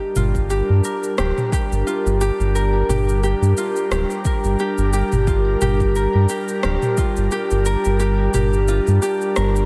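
A bright, fingerpicked Celtic harp rings up front with arpeggios through delay and slapback echo in this earthy, hypnotic organic downtempo excerpt, over a round, dark analog bass that pumps with the sidechain, an airy, breathy pad holding detuned chorused chords that also pump, an electronic, produced afro-pop kit of cabasa, rim click and toms, and a deep electronic kick that plays from 0.3 to 7.1 seconds, all set in light digital reverb.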